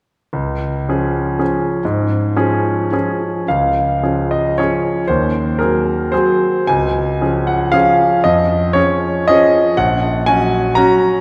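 A clear concert grand piano plays alone from 0.3 s in a graceful, proud romantic classical dance in triple time, its dotted rhythms shaped with rubato. The piano sits up front, polished and intimate, with deep bass, long sustain and audible action noise, set in a wet church reverb and a dark, warm production. A new section begins at 3.5 s, and this fragment of a longer piece stops at 11.2 s.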